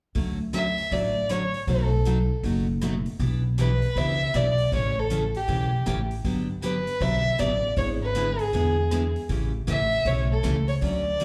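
A swinging 4/4 pulse at 158 BPM drives this cheerful, playful slice of western swing in D major, cut from a longer piece and heard as a live club gig through the venue's PA with a small room's reverb. Up front, the upright bass is plucked on gut strings, woody and thumpy with a dark low end, while the big-band drum kit sits in the background with hi-hat, rim click and a punchy kick. A picked steel-string dreadnought guitar enters first at 0.1 seconds, bright and full-bodied with audible finger squeak and a slapback echo, carrying the accompaniment. At 0.5 seconds a single bowed fiddle takes the melody up front, its tone shaded and smooth on top with light vibrato and its own slapback echo. The changes move from Dmaj7 through B7, Em7/B and A7 to Gmaj7, E7/G# and back to A7, keeping the mood lively to the end at 11.2 seconds.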